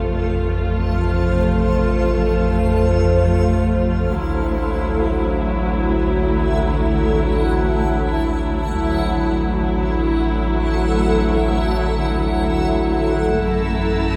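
Cinematic suspense film score in free time, tense and ominous, where an up-front viola section carries lush vibrato accompaniment over background double basses and a focused cello section, a saturated sine sub bass drones on A1, a reversed, dreamy granular texture holds bright sustained chords, and a violin section enters with a soft attack at 13.4 s on the F#m7 chord, all heard from further back in a recital hall.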